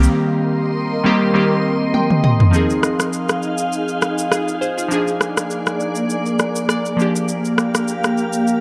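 Warbling, vintage-toned digital keys with bright chorus accompany this mellow, sultry afrobeats fragment over an ethereal FM pad of slow-blooming chords and a layered electronic deep house kit of rim clicks, shaker and toms, with a break from 0.2 seconds where a keys fill and a drum fill at 1.9 seconds carry the opening Cm7 into the Fm7–Bb7–Gm7 movement of the second section, all set in a dark production touched with tape saturation and light reverb.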